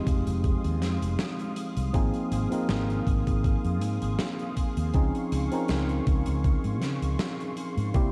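A slow 80 BPM groove in 4/4 with a light swing on the sixteenths drives this short vaporwave clip, cut from a longer piece and built over Fm7, Ab6 and Dbmaj7 chords. A thumpy, sampler-style electronic kick sits prominently up front, re-recorded in a large room for a tape-softened weight, while a big acoustic rock kit adds hi-hat and a medium-tuned snare from a bright stone room further back in the mix. A mellow fretless electric bass, dark, round and punchy through its amp, enters at 0.1 seconds and carries the low end. A clean tine electric piano heard through its built-in speakers plays the accompaniment close to the listener, touched by subtle chorus and tape echo, as a lush unison pad of detuned, warbling vintage sawtooth voices holds slow-attack chords with chorus quietly beneath it. The dark production keeps reverb to a minimum, giving the nostalgic, melancholic mood an intimate, dry closeness.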